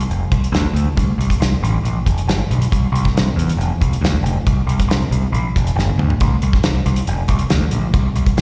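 A growling, bright, overdriven electric bass sits punchy and up front through this confident, swaggering classic rock excerpt at 138 BPM in straight 4/4. A damped, dry 70s drum kit with a tight kick, medium-tuned snare, hi-hat, toms and slapback echo backs it and breaks into a fill at 5.8 seconds, all heard as a live gig through the venue's PA with a recital-hall ambience.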